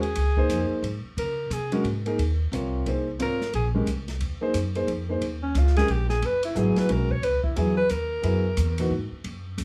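A lightly reverberant small-room sound frames this cool, hypnotic modal jazz in Eb phrygian at 178 BPM in a swung 3/4, where a warm, up-front alto saxophone solos with vibrato over woody pizzicato upright bass, an intimate grand piano with audible action noise and long sustain entering at 0.4 seconds on chords moving from Bbm11 to Eb13sus4 and Gb13sus4, and a quieter, airy drum kit with dark cymbals and a boomy kick.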